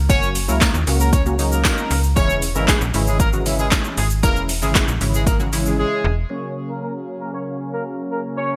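Overdriven deep house drums with a deep kick, punchy snare and metallic hats drive this euphoric, upbeat dance-pop excerpt at 116 BPM in F# mixolydian, alongside a snappy, sidechain-pumped FM slap bass, a smooth octave-doubled horn section with delay, a detuned sawtooth polysynth comp with chorus and pumping, and a jingly tambourine in the background, until the drums drop out at 5.8 seconds and the bass stops at 6.3 seconds, leaving horns and synth under a filter sweep in a bright 1980s-style digital mix.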